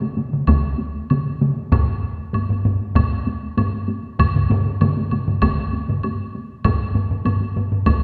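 This Japanese traditional taiko drum ensemble piece is powerful and driving, moving at 97 BPM in a straight 4/4 feel. One taiko ensemble layer opens at 0.0 seconds with heavy sticks and a close, present sound. A second ensemble, also struck with heavy sticks, carries the sound of a live room and drops out at 6.0 seconds. A third ensemble layer with hard sticks sits up front and is joined by a woody, dry woodblock. Solo taiko drums enter at 1.7 seconds, their hard-stick strikes compressed and saturated. A wet concert hall reverb surrounds the whole ensemble and places the listener further back in the room, in this short passage cut from a longer piece.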